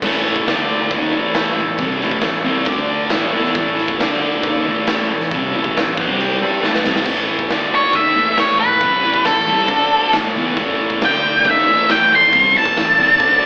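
Raw and rowdy, this garage rock excerpt at 136 BPM in A major drives a double-tracked, up-front fuzz guitar riff over a gritty, punchy drum kit in a pumping stone room and buzzy, overdriven combo organ chords with spring reverb, adding organ fills and a drum fill before a dark octave-fuzz lead guitar solo enters at 7.7 seconds, the whole captured like a live club gig through the PA with an AM-radio tint.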